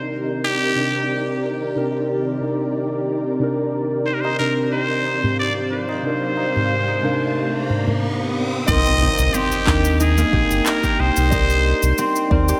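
Hypnotic and warm, this organic downtempo excerpt sways in a gently swung 4/4 over a Cm7 chord. A nasal, raspy trumpet with a straight mute carries the melody up front, its breathy jazz-style lines colored by scooped notes, light vibrato, digital delay and slapback echo. Beneath it, soft, muted felt-like synth keys move with chorus and sidechain pumping. An ethereal, airy pad under a filter sweep hangs over a dark, wind-like tuned noise texture in the background, joined briefly by fingerpicked concert harp arpeggios and, from 4.2 s, a high-tuned, close and dry tabla. A riser builds from 5.7 s into an electronic impact at 8.7 s, where the pad and noise texture fall away and a round, deep analog bass, an electronic kick and produced cabasa and handclaps arrive as the ringing harp returns. A lush hall reverb gives the mix a big arena sound.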